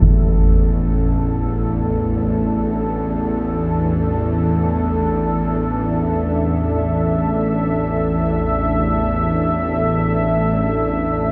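Unfolding in free time, this ominous, dark ambient fragment is cut from a longer piece. A deep, moody pad holds sustained chords on a D5 harmony, its detuned, chorused tone mellow and up front, while beneath it a tense, string-like drone with a bowed quality, ring-modulated edge and vibrato sits low in the register. Both parts sound throughout the 11.3 seconds, bathed in a huge ambient reverb with an 8.8-second decay.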